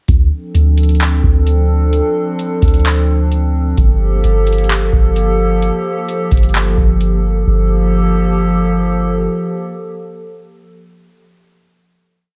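A sparse half-time beat from a booming analog drum machine drives this atmospheric cloud-rap piece, its deep kick, metallic hi-hats with fast rolls and handclaps sitting dry and up front with a gritty 12-bit sampler edge. Beneath it, a soft 808-style bass plays long, round sub-bass notes that follow the kick, with a fast attack and a dark, decaying sine tone. A warbling, tape-like pad holds sustained chords throughout, its detuned, wave-folded square and triangle tones smeared by chorus and its own built-in reverb, and pumping from sidechain compression. The harmony moves from Dm7 to Gm9, giving the short piece a spacious, melancholic, nostalgic mood. The drums stop at 7.1 seconds and the bass at 9.3, leaving the lo-fi pad alone to sustain the final chord until 11.2 seconds. The overall room sound is close, with little added space around the parts.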